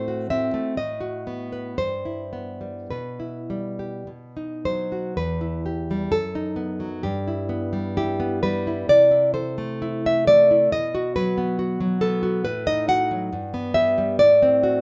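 In a rubato 2/4 pulse, this intimate, passionate romantic piece for solo classical guitar, cut from a longer work, puts a full-bodied, fingerpicked nylon-string guitar up front, ranging from E2 to F#5 across two statements of the same opening theme, moving through chords such as Em/G, B7/F# and Am/C before returning to F#dim/A at 14.2 seconds, the whole performance bathed in a wet studio reverb.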